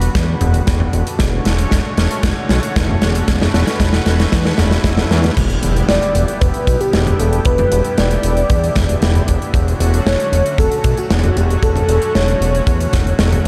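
A dark, lightly reverberant production frames this moody, cinematic synthwave excerpt, built on a thick, detuned analog bass with sidechain pumping, a lush, warbling unison pad with chorus, and an up-front acoustic rock kit with bright cymbals and a medium-tuned snare, while a punchy big-room kick sits further back. The opening drum fill runs into a very quiet electronic swell that lands on an impact at 5.4 seconds, marking a new section. From 5.9 seconds a velvety, wave-folded sawtooth lead with vibrato, chorus and digital delay carries the melody, joined by a second line from a very quiet, dreamy FM electric piano layered with a soft pad.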